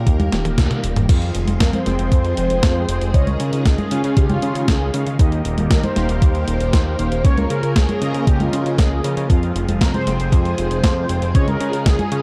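Italo disco with a bittersweet, nostalgic mood: a thumpy, overdriven electronic kick sits up front alongside a fat, wave-folded analog bass, while a sampler-style 12-bit drum machine adds congas, crash, hi-hat, snare and toms, opening with a drum fill from 0.3 to 1.1 seconds. A round, dark synth brass carries the melody, bold, warbling analog brass stabs punctuate, and a swirling, phased string machine holds bright chords in the background, all in a dark production with light digital ambience.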